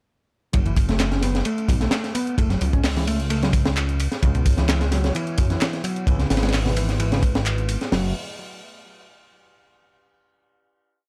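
A crunchy looped breakbeat at 130 BPM in 4/4, with a light swing on the 16ths, drives this short, raw and funky breaks piece in F# minor. The acoustic kit sits up front, gritty and saturated, with a tight kick, a high-tuned snare and dusky, rolled-off cymbals, and its loop carries edits. A tape-warm analog drum machine layers closed and open hats and claps over the break. Underneath, a thick, detuned sawtooth bass with tube saturation plays long gliding notes with a fast filter pluck. An overdriven picked electric bass, round and punchy with tube saturation and delay, cycles a 32-step riff alongside it, and from 4.2 s, as the harmony moves from F#m to C#m7, a deep, moody analog pad enters in the background, ring-modulated with chorus and sidechain pumping. The drop runs until 7.9 s, when the piece settles on a final F#m9 chord within a small room ambience.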